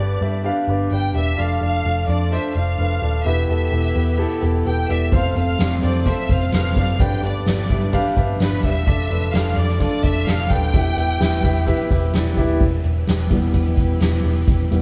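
An up-front concert grand piano with deep bass and long sustain leads this earnest, driving piano pop fragment, carrying the accompaniment before stepping forward for a solo from 12.6 seconds. A lush, bowed violin section sings the melody with vibrato until 12.1 seconds over a very quiet studio string section holding sustained chords, while a dark, round, foam-muted picked electric bass anchors the low end. At 5.1 seconds a soft-mallet drum kit joins with a boomy kick and dark cymbals, the band sharing a stone room's moderate reverb.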